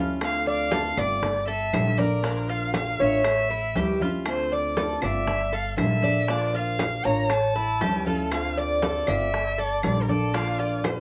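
An 11-second excerpt of Cuban son and guajira opens with fingerpicked steel-string acoustic guitar, Cuban tres and upright bass together in D minor at 118 BPM, the guitar dark with audible finger squeak, the tres picking metallic arpeggios on its doubled strings through a plate reverb, and the pizzicato bass giving a thumpy, gut-strung low end. At 0.2 s a bowed violin enters up front with the melody, its vibrato and portamento lending a sultry, expressive voice even as it sounds somewhat distant. The percussion joins at the same moment: ringing, low-tuned congas played with soft hands and given a compressed, saturated edge, tight high-tuned bongos, and woody claves, the last two sitting in the background. The harmony cycles through Dm7, Gmadd9, Bb and A7 in a steady 4/4 with a straight feel. Guitar, tres and violin carry the colour of cassette tape, and the whole take has the short, wet booth ambience of a home recording, cut from a longer piece.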